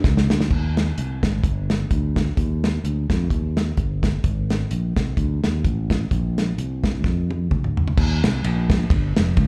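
Reverent yet jubilant, this uptempo gospel excerpt swings at 128 BPM in Eb major, with a fingered electric bass and a dry, dark-cymballed soul drum kit of kick, medium-tuned snare, hi-hat, ride, crash and toms both sitting up front through a live club PA, the drums opening with a fill and adding another at 7.0 seconds before a new section begins at 8.0 seconds.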